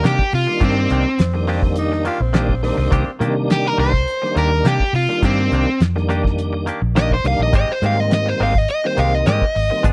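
The excerpt opens with a full band already underway, a soulful, mournful straight-eighth soul blues in C minor at 104 BPM, settling on a Cm9 chord before moving to Abmaj7 at 7.5 seconds. Up front, an overdriven semi-hollow guitar carries the melody with a picked, hollow-body tone, while a vintage muted fingered electric bass sits equally forward, dark, round and punchy with a foam-muted thump. Alongside them, a cloth-damped drum kit plays hi-hat, kick and snare with a fat snare, a tight kick and a rolled-off top. A tonewheel organ fills the accompaniment through a slow rotary speaker with light overdrive and chorus vibrato, and a bright, twangy clean electric guitar, recorded direct and compressed, adds picked stabs. From 1.2 to 3.2 seconds a raspy, growling tenor saxophone slips in a short jazz-style second line with scooped notes, all within a dry, close 1970s-style studio sound.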